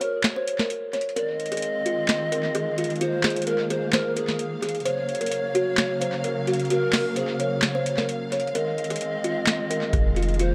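This brooding, menacing trap excerpt at 130 BPM in a half-time 4/4 feel opens with a kalimba melody, a breathy pan flute second line and a booming analog drum machine, all three soaked in tape echo over a rootless Gb chord. The kalimba sits mid-forward with a woody, ringing pluck, while the pan flute floats distant and hollow with gentle vibrato. At 1.2 seconds a dark symphonic string section enters with lush, bowed sustained chords as the harmony moves from Fm7 to Gbmaj7 and back to Fm7, and the kick drum drops out for much of the passage, leaving the crisp snare, handclaps and metallic hi-hats up front. In F phrygian, the whole echo-heavy mix carries light small-room ambience, and a deep, sine-toned 808-style bass lands on a long F1 at 9.9 seconds, just before the cut.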